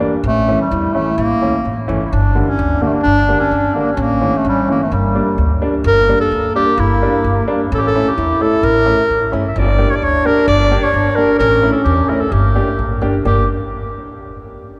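Klezmer excerpt with a festive yet bittersweet mood, where a clear, classical-style clarinet carries the melody up front from 0.3 seconds over a breathy, whispered trombone second line with vibrato and scooped notes, a polished, woody upright piano accompaniment and a thumpy pizzicato upright bass on gut strings, set in the long, wet reverb of a church or concert hall.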